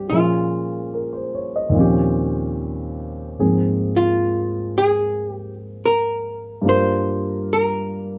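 A jazz ballad with a tender, late-night mood, this short passage is cut from a longer piece and moves at an unhurried swing. An archtop guitar, miked and amplified, carries the melody throughout, its clean, picked hollow-body tone sitting up front in a narrow middle register. Beneath it, a concert grand piano provides accompaniment from start to finish, mellow and vintage in character, reaching down into a deep bass with a short, smooth sustain. The harmony drifts from Bbm7 through Eb13 to a lingering Ab69 before turning to Gm7 near the end. Both instruments are placed close to the listener, wrapped in a moderate studio reverb and a dark, warm production.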